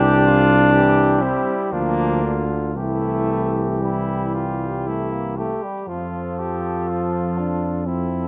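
Closely miked with light reverb, this tender, lyrical excerpt from a hymn-like classical brass band piece moves in a rubato 3/4 at 56-65 BPM, where a mellow cornet carries the melody alongside a flugelhorn second line, both with light vibrato, while a clear, roomy euphonium sits up front in the accompaniment, a distant trombone murmurs in the background, and a dark, soft-attacked tuba anchors the bass through chords of C, Bb/D and F.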